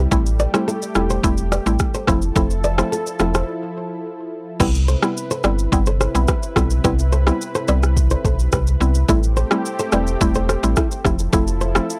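A straight afrobeats groove in 4/4 rides on an electronic, produced afro-pop kit, with a deep kick up front alongside crash cymbal, rim click and shaker, and a break arrives between 3.5 and 4.6 seconds before the second section opens. Beneath it, a sub bass with octave sits just as forward, its sine-and-triangle tone full and sustained with a fast attack. A mallet-like FM synth pluck adds woody, round, percussive accompaniment with a noise layer, short decay and chorus, while a lush, warbling sawtooth pad holds thick, detuned unison chords with slow attack, long release and chorus further back in the mix. Over this, an acoustic flamenco guitar plays a fingerpicked riff with a boxy tone, audible finger squeaks and tape echo. The harmony moves through Am7, Fmaj7 and Cmaj7, giving this romantic, joyful fragment of a longer piece a gritty hardware sound with little reverb.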